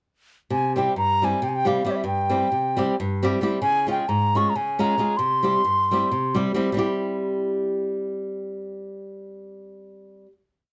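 A reedy baroque flute and a flamenco guitar start together at 0.5 seconds, setting a bittersweet, fiery Balkan folk dance in a fast 7/8 at 269 BPM in C Phrygian dominant. The wooden, pure-toned flute sits up front with vibrato and tongued, song-like motifs, while the fingerpicked guitar, warm with fresh strings, supplies close-voiced off-beat chords as the harmony moves from C to Db and back. The flute drops out at 6.4 seconds, leaving the guitar to ring out a final chord until 10.3 seconds in a close, detailed studio sound with moderate ambience.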